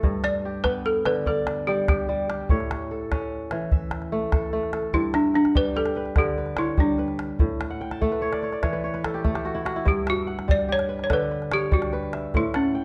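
A woody, round balafon played with hard rubber mallets carries the melody up front in this flowing, hypnotic excerpt of West African traditional music in 12/8, over bright, ringing kora arpeggios that break into a fill from 7.7 to 9.9 seconds and deep, close calabash percussion, the ensemble sitting in a moderate recital-hall reverb with a dark production.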